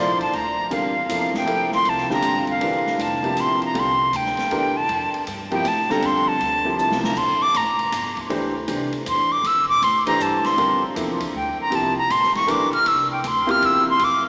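A swung three-beat pulse carries this modal jazz passage, which is cut from a longer piece and has a hypnotic, open mood. A silver concert flute takes the lead with a solo throughout, its tone pure and reedy with soft attacks, vibrato and rolled-off highs, sitting up front in the upper register. A clear concert grand piano, also up front and rich in deep bass, supplies the accompaniment beneath it, while a woody pizzicato upright bass sits low and quiet in the mix. The acoustic jazz kit brings dark cymbals, a medium-tuned snare, a boomy kick and hi-hat, ride and crash, with a brief drum fill at 6.8 seconds. The harmony rests on one lingering chord until a change at 11.7 seconds, and the whole ensemble is bathed in a long cathedral reverb that gives a church-like sense of space, though the overall sound has a small-speaker quality.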